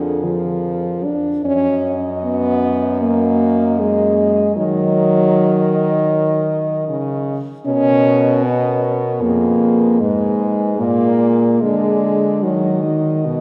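In a rubato 4/4 at 76 BPM, this yearning, solemn classical horn quartet in Eb minor unfolds in a wet church reverb heard from further back in the room, with a mellow, close-miked French horn melody with light vibrato and a warm, soft-attacked, vintage-toned second horn with vibrato sitting in the background, while a dark accompanying horn and a smooth-topped bass horn stand up front, the harmony moving from Bb7/F through Bmaj7 and Fdim to settle on Ebm in this fragment of a longer piece.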